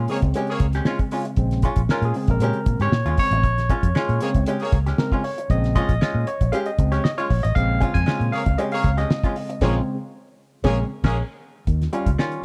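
A barky tine electric piano leads this cool, funky excerpt in Bb dorian at 117 BPM, taking the solo from the start over a steady, straight 4/4 groove. Lightly overdriven through a combo amp and given a slapback echo, the piano sits up front with a bright, biting edge, while a vintage hollow-body jazz guitar adds clean, picked, compressed accompaniment through a wah. Underneath, a foam-muted fingered electric bass gives a round, amped low end, and a cloth-damped drum kit thuds along with a fat snare, tight kick, hi-hat and dark crash cymbal. A horn section with light vibrato and a smooth top plays a short second line in brief bursts, then returns at 8.3 seconds, its slapback echo matching the piano's. The band hits an accent from 9.6 seconds as the harmony moves from Bbm7 to Eb9 at 11.7 seconds, all within a dry, dark and warm production.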